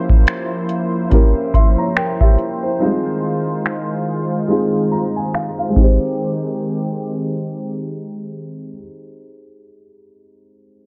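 A booming analog drum machine sits up front in this short contemporary R&B excerpt, its deep kick, metallic hats, finger snaps and crash cymbal driving a slow 71 BPM groove in 4/4 with a gentle swing on the sixteenths. A felt-muted upright piano supplies soft, dark, boxy accompaniment in Ab major, moving through C7b9, Fm7 and Abmaj7, while a detuned sawtooth pad with a soft attack and chorus holds smooth sustained chords up front in the mix. A filter sweep runs through the opening section, and a digital ambience passed through a low-pass filter surrounds the sound. At 4.5 seconds the kick drops out as the piano plays a fill, and the drums stop at 6.0 seconds. The piano is the last part heard, continuing to 10.9 seconds and leaving a romantic, smooth mood.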